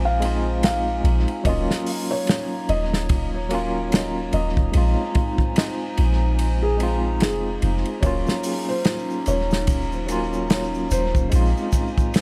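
Trip hop with a hypnotic, smoky mood, this short excerpt from a longer piece moves at an unhurried, swung pace over a shifting pair of minor and suspended chords. A soft, round 808-style bass sits deep and up front beside a polished acoustic drum kit with a punchy kick, medium-tuned snare, hi-hat and ride cymbal in an airy studio room. A clean tine electric piano carries the accompaniment through tremolo, tape echo and vintage sampler grit, while a warbling, nostalgic pad holds dark sustained chords with chorus and its own reverb. The melody comes from a felt-muted upright piano, intimate and boxy with audible action noise, roughened by sampler grit and trailed by dub echo. At 8.0 seconds a compressed, saturated tube shaker enters in the background with tape echo, and the whole mix is echo-heavy in a small room, dusted with vinyl crackle.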